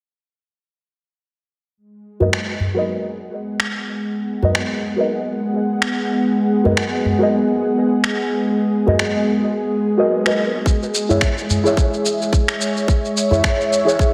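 A warbling, detuned analog pad holds sustained G#m7 chords up front, joined by a deep, nasal chord stab with tape echo and filter sweeps, a small acoustic udu, and gritty finger snaps and shaker in this hypnotic, swung organic downtempo excerpt at 108 BPM in G# minor, all soaked in lush hall reverb until an overdriven, tight electronic kick arrives at 10.7 seconds as the harmony moves to C#m.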